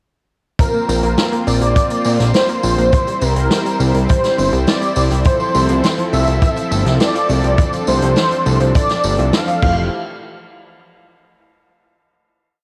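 Nostalgic and dreamy, this short synthwave piece in F major moves at 103 BPM in a straight 4/4, with a thick, nasal unison lead carrying a repeating riff melody with vibrato, ensemble chorus and analog delay over smooth sidechain-pumped supersaw chords moving from Bbsus2 through C to Fmaj7. A very quiet, bright unison pluck cycles an 8-step arpeggio, while a fat, tube-saturated analog bass gallops in sixteenth notes from 0.9 seconds alongside an up-front punchy kick and a swinging big-band drum kit giving an 80s machine backbeat of snare, hi-hat, tambourine and crash. The whole-piece chorus settles on Fmaj9 before a final hit at 9.9 seconds, all with light reverb and the hazy feel of a home cassette recording.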